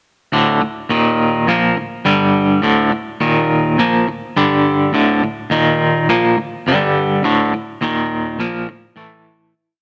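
A twangy electric guitar carries this short rock piece alone, playing a bright, clean, picked power-chord riff that sits up front with a shimmering tremolo on it. The tempo is a steady 104 BPM in a straight 4/4, and the riff runs from 0.3 seconds to the end, cycling through D5, Eb5 and G5 chords in a repeating loop before closing on A5. The pattern's insistent return gives the piece a trippy, hypnotic mood. An echo chamber reverb of moderate size lends the guitar a roomy halo. The whole piece lasts under ten seconds, fading out from 7.2 seconds to its close at 9.5 seconds.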